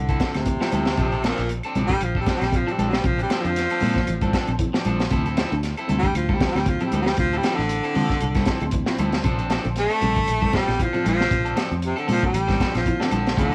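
Heard through the soft haze of a home cassette recording with light reverb, this 13.5-second cut from a longer afrobeat piece moves at 116 BPM in 4/4 with a swung sixteenth-note feel, its mood defiant and hypnotic. A clear baritone saxophone carries the solo melody from the first moment, sitting up front yet sounding roomy and distant, with vibrato and a cassette-tape tint. Beneath it, a fingered electric bass gives a dark, round, foam-muted low end, while a crunchy breakbeat kit with a tight kick, high-tuned snare and hi-hat sounds gritty and saturated, its top rolled off. One electric guitar at the edge of break-up plays fingered, twangy stabs, very quiet and bathed in spring reverb and tape grain, and a second, picked and twangy, adds arpeggios from 0.5 seconds. Ringing, high-tuned congas sit compressed in the background, and woody claves tick close and dry at a whisper, all circling between Dm9 and Bbmaj9.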